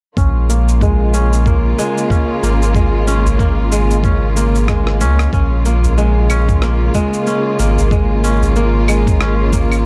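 This excerpt from a longer piece has a dark, warm production with little reverb, setting a mystical organic downtempo groove at 93 BPM in 4/4 with a swung sixteenth-note feel in Bb minor pentatonic over a Bbm7 chord. A rich, bowed studio string section holds sustained chords with focused ensemble vibrato, treated with sidechain pumping and shimmer reverb. A crisp, ringing fingerpicked kora plays arpeggios through a low-pass filter, tape echo and shimmer reverb. Underneath, a deep, round sine sub bass sits up front with a fast attack and mellow sustain, while a thumpy, gritty sampler-style electronic kick plays alongside compressed electronic cabasa, rim click and claves carrying a tape character. Filter sweeps run on the sub bass and kora through the opening stretch, and a very quiet, close and dry udu enters at 3.3 seconds. A faint electronic swell arrives at 4.5 seconds, just ahead of a drum fill that leads into the second section at 5.3 seconds.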